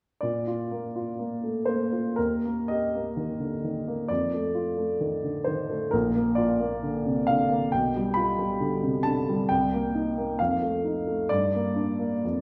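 A warm, natural-sounding baby grand piano plays alone from 0.2 to 12.4 seconds, spanning Bb1 to B5 in a lyrical, romantic character piece in 2/4, shaped with unhurried rubato. The harmony moves from Bb through Eb and F7 back to Bb, then turns through G7/B, Cm7 and F7 before settling on Gm, as this short passage is cut from a longer work. A wet recital hall reverb surrounds the instrument, and the listener seems placed further back in the room.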